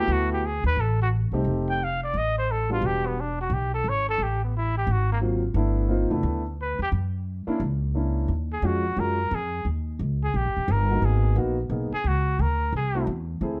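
Small-group swing and bop jazz with a smoky, swinging mood at 176 BPM in 4/4, this excerpt features a breathy, vintage trumpet with light vibrato and scooped notes carrying the melody and moving into a solo as the music settles into Eb minor at 8.3 s, over an intimate concert grand piano with audible action noise that pauses between 3.1 and 5.2 s, and a woody, thumpy pizzicato upright bass, all three up front in a dark production with light reverb.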